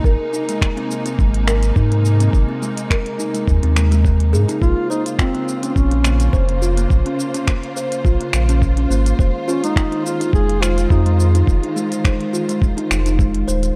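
A mellow, close-miked duduk sings a folk-style solo melody with vibrato and delay from 4.6 to 11.3 seconds in this earthy organic downtempo excerpt at 105 BPM, set over woody, airy kalimba arpeggios with delay, a deep, round sine sub bass with tube saturation up front, a gritty, thumpy overdriven kick, crisp hi-hat, finger snaps and shaker from a tape-toned electronic kit, and distant, lush bowed strings pumping under sidechain as the chords move from Abadd9 through Bbmadd9 to Fm7 in a dark, lightly reverberant mix.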